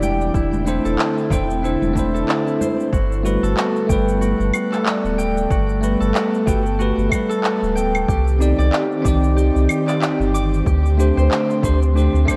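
A deep, round sub bass sits up front in this relaxed, blissful, gently swung sunset chillout excerpt, its mellow sine tone warm and sustained. A bell-like tine electric piano plays bright, clean accompaniment through built-in speakers, dressed in digital delay and shimmer reverb. A fingerpicked concert harp rings out arpeggios higher up with the same delay and shimmer, while an airy, breathy pad holds soft, detuned sustained chords in the background, thickened with chorus. An electronic shaker, handclaps and claves set a layered, produced groove, joined by a punchy electronic kick from 0.3 seconds, and soft-handed congas sound faintly until 2.8 seconds. The mix floats in a lush hall reverb and bears the warbly pitch drift of worn old cassette tape, as the chords move from C69/E to Gmaj9, Cmadd9 and D7sus4.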